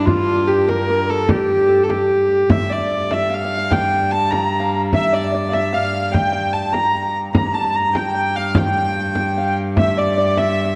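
In a straight 6/8 at 99 BPM, this driving, ancient medieval dance in G dorian puts a rich, nasal hurdy-gurdy up front on the melody, with a bright, ringing Celtic harp playing a second line, a clear, reedy viola da gamba holding a G2 drone with light vibrato, and a deep, close and dry frame drum, all set in a dark production with a wet scoring-stage reverb and cut from a longer piece, shifting into a new section at 2.5 seconds.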